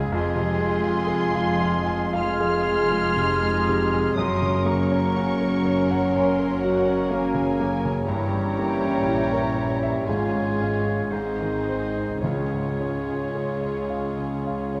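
Lyrical and passionate, this slow classical passage moves with a rubato feel, cut from a longer piece. A clear concert grand piano carries the melody up front, intimate and polished, with audible action noise, deep bass and long sustain. Muted violins also carry a melody from high in their range in the background, while a second muted violin section, lush with vibrato, joins an airy, distant flute, a roomy oboe and a very quiet clarinet on second lines. Beneath them a very quiet bassoon and a veiled studio viola section accompany, a distant French horn section holds mellow sustained chords, and con sordino cellos and double basses anchor the bass. Timpani with hard mallets enter at 10.1 seconds, very quietly, as the harmony moves from a diminished chord toward a resolution on the home chord, all wrapped in a wet, dark scoring-stage reverb.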